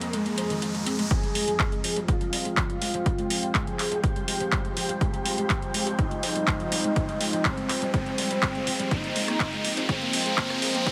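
Driving and dramatic, this excerpt of melodic techno in F minor at 123 BPM sets a smooth, sawtooth portamento lead with vibrato over a deep, detuned analog pad, a woody, wave-folded pluck playing arpeggios with digital delay, a blurred granular cloud pad and a very quiet string-like drone that ends at 1.2 s. An electronic riser builds throughout, a filter sweep runs from 1.1 s, and a punchy, tape-warm kick joins the up-front techno kit of handclaps, metallic hats, rim clicks and toms at 1.1 s. The lead, pads and pluck all pump under sidechain in a light digital ambience.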